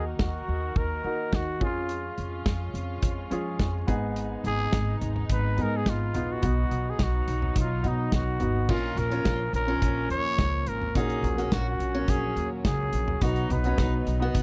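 Bittersweet and driving, this piano-driven pop excerpt moves at 106 BPM in a straight 4/4, with a raspy, growling trumpet carrying the melody up front over a polished grand piano, a woody pizzicato upright bass and a punchy, dark-cymbaled country drum kit that enters at 0.2 seconds. A distant, reedy string section holds bowed chords in the background through a progression that opens on Ebm, and a picked acoustic archtop guitar joins with a riff at 8.7 seconds, its fresh strings carrying a touch of finger squeak. The dry, close 1970s-style studio sound keeps the mix near and intimate.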